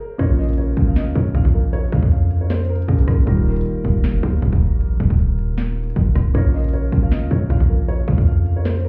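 A punchy, heavy 808-style bass sits up front in this short, melancholic and eerie trap cut, its sine tone carrying a noise layer and a fast attack that decays under each note in the low register. Beside it, an electronic trap kit with a hard-clipped kick, sharp snare, crisp hats and rim clicks drives a half-time feel at 156 BPM in Bb dorian. A dark, boxy concert grand piano opens alone for a brief moment before the band arrives at 0.2 seconds. It then carries a mellow upper melody through a low-pass filter and tape echo, dropping out at 3.2 seconds and returning at 6.3 seconds. Underneath, a soft felt-muted upright piano supplies intimate, thin-felt accompaniment, its action noise audible through its own low-pass filter, as the harmony moves from Bbm to Ebadd9 and back. The mix is dry yet heard muffled as if through a wall, with a hint of club reverb.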